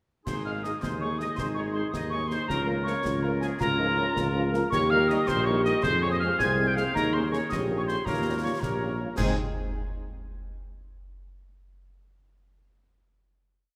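A short, complete military-style march for wind band in 6/8 and Ab major opens at 0.3 s with nearly the whole ensemble at once: a mellow trumpet section carries the spirited, rousing tune while a pure-toned piccolo with vibrato doubles it at the octave above. Beneath them, a mellow tuba sits up front, punchy with a smooth top, playing bass on the beats and sustained bass notes, as the percussion drives a marching snare over a bass drum on the beat, with dark clash cymbals. A woodwind section with a soft attack plays chords in the rhythm of the tune and sustained chords in the background, and a French horn section adds after-beat chords and held harmonies with light vibrato. A euphonium joins at 0.8 s with a warm counter-melody. At 108 dotted-quarter beats per minute, the harmony moves through Bbm/Db, Eb, Fm and a suspended dominant before settling on a final Ab chord at 9.2 s, which rings out in the wet concert hall reverb.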